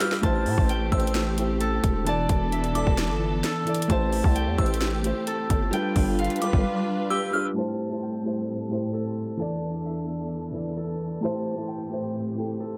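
A growling, saturated 808-style bass and a hard-hitting trap drum kit with hard-clipped kick, sharp snare and metallic hats drive this menacing half-time hip hop cut at 131 BPM in A minor, over a boxy dark grand piano, lush bowed strings with vibrato, a fingerpicked ringing Celtic harp with delay, and a tinkling FM synth tine bell with chorus; the drums and bass stop at 6.6 seconds, the bell follows at 7.6 seconds, and the piano, strings and harp carry on alone through a dreamy, reverb-soaked mix to 12.8 seconds.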